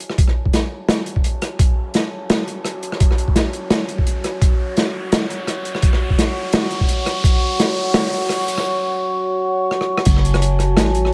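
A growling, buzzy 808-style bass with tube saturation lands up front at the drop at 10.1 seconds in this tense, dark half-time drum and bass excerpt at 170 BPM in F# minor. It caps a build-up where a gritty, pitched-down electronic kick, an acoustic jazz kit with dark cymbals, rim click, shaker and a medium-tuned snare, and an electronic riser play beneath a deep, detuned analog pad with chorus and sidechain pumping that holds a sustained F#m chord, all in an echo-heavy mix with light reverb.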